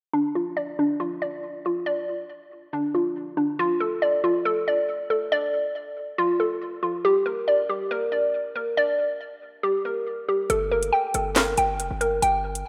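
A hollow, bouncy square-wave pluck opens this ominous, dark drill excerpt, playing arpeggios up front through chorus, a low-pass filter and tape echo, its detuned, mellow tone carrying a noise layer and a sub octave. At 139 BPM in 4/4 with a half-time feel, the pluck carries the piece alone through a D minor chord and then Bb6, with a second section beginning early on. At 10.5 s the harmony moves to Gmadd9 as a sharply produced electronic drill kit arrives, tape-tinted and close, with a crisp snare, metallic hi-hats and handclaps. Alongside it comes a punchy, heavy 808-style bass, a sine with a noise layer, fast attack and decaying tail, sitting low between F1 and G1 until 12.6 s. A moderate, lush hall reverb surrounds the parts, and the whole has the rough feel of a home demo mix.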